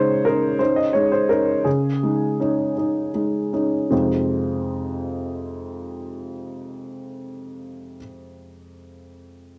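A woody upright piano plays alone from 0.0 to 9.6 seconds, sitting up front with audible action noise and a slightly detuned, natural character that gives this neoclassical minimalist fragment an intimate, reflective mood. Cut from a longer piece, it moves in a rubato 6/8 at about 51-61 BPM counted in dotted quarters, centred on F minor, with the playing ranging from F2 to Eb5. The opening passage rests on a Dbsus2 harmony and slows down until 3.9 seconds, when a new section begins on Fm7. The sound is a dry, close 1970s-style studio recording with a touch of studio reverb, keeping the instrument's mechanical detail and gentle imperfections in clear view.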